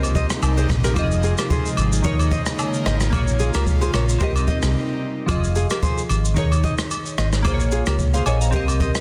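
A dark, round, punchy hollow-body electric bass, fingered and up front, anchors this smooth, hypnotic afrobeats excerpt in F minor at 111 BPM, with a light 16th-note swing. A jazz brush kit sits up front alongside it, pairing a boomy kick with rim click and shaker, all roughened by vintage 12-bit sampler grit and soft clipping on the snare. Glassy digital keys with a filter sweep and chorus ring out over the Cm7, Fm7, Eb7sus4 and Bbm7 cycle, while a breathy, detuned pad with a slow attack and chorus holds chords until a short break from 4.7 to 5.3 s. A fingerpicked nylon-string guitar, entering at 0.2 s, plays a riff with audible finger squeak and a trail of delay, as agogo bells, woodblock, maracas and group handclaps tick along in the background. The small room ambience and dense, heavily limited modern master keep the mix tight and forward.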